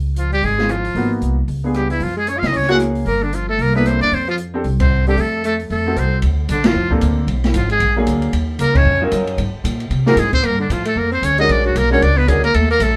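An upright bass opens this brisk small-group swing and bop excerpt, its pizzicato tone woody and growly and sitting up front. Within a fraction of a second the muted trumpet takes the melody, buzzy and thin with light vibrato, soft attacks and scooped notes. A breathy, close-miked tenor saxophone carries a second line beneath it. An open jazz kit with dark cymbals, a medium-tuned snare and a punchy kick drives the swing. A baby grand piano enters at 0.6 seconds, comping with a clear, natural sound and short sustain. The mood is sophisticated yet relaxed, with the band playing live in a small room that adds a wet sheen, shared accents landing at 4.8 and 6.6 seconds, and rich extended harmony moving into a second section at 6.2 seconds.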